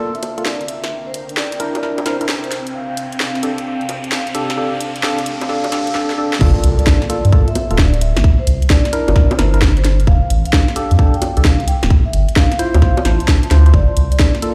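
Hollow, dark organ stabs with chorus and dub echo open this soulful, skippy two-step garage excerpt alongside an electronic riser and a bright, cloudy granular pad, while a ringing vibraphone melody under a filter sweep and an overdriven garage kit of cracking snare, hi-hat, bongos and crash build toward 6.4 seconds, where an impact lands and a round, deep sub bass and a tight, up-front electronic kick drop into the swung groove.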